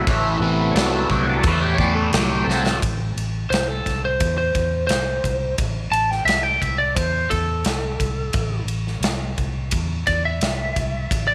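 A straight 4/4 groove at 87 BPM anchors this brooding, heavy blues rock and southern rock excerpt in A minor, opening on an Am9 with a thick, gritty overdriven tonewheel organ taking a solo through a slow rotary speaker. A dark, double-tracked overdriven guitar riff with phaser plays alongside it, over a round, foam-muted vintage bass and a big acoustic kit with a punchy kick and bright cymbals. A drum fill at 2.5 seconds leads into an Am section at 2.8 seconds, and at 3.5 seconds a twangy, slightly broken-up lead guitar enters up front with the melody, all set in light reverb and small room ambience.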